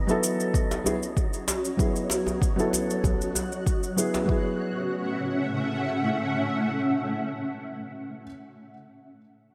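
This organic downtempo piece, cut from a longer work, opens with a felt-muted upright piano, a granular cloud pad and a wind-like tuned noise texture sounding together, setting an earthy, warm mood in a straight 4/4. Up front, the piano plays soft, intimate accompaniment, its thick felt giving a short sustain and audible action noise, shaped by sidechain pumping, a low-pass filter and delay. The pad holds cloudy, detuned sustained chords with a slow attack, carrying its own reverb, ensemble chorus and pumping, while the breathy noise layer sits dark in the background with a lush chorus. Within the first second a shaker and a deep, overdriven electronic kick drum, both re-recorded in a small room, arrive alongside a tight, cracking djembe, and these percussion parts fall away at about 4.3 s. The pad lingers to 7.5 s and the piano carries on until 8.3 s, with the recording bathed in a moderate plate reverb and a bright 1980s-style digital production.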